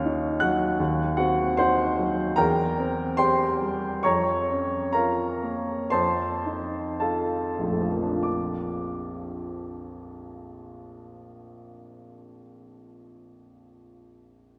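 Rubato in 4/4 and drifting between 46 and 83 BPM, slowing through the first 8.2 seconds, this stormy, passionate romantic character piece, a fragment of a longer work, features a solo baby grand piano with an open, long-sustaining, up-front tone that spans Bb1 to Gb6, moving through dark harmonies from Ebm7 to F7 before settling on Bb at 8.2 seconds, the piano bathed in a wet church reverb.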